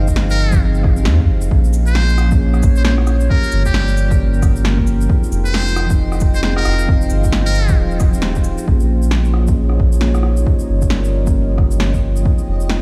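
A buzzy, metal-muted trumpet carries the wistful melody from 0.3 to 7.8 seconds, its scooped notes trailed by tape echo over muted, felt-like synth keys and a moody, detuned analog pad with 12-bit sampler grit, the keys and pad both pumping against the kick. This melancholic future garage excerpt in F minor moves at 134 BPM with swung 16ths, anchored by a deep, round dub sub bass, a punchy electronic kick and a layered kit of shaker, woody snare, rim click and cabasa. At 9.2 seconds a reversed, granular texture swells in faintly behind the rest, and the whole mix sits in a stone-room reverb.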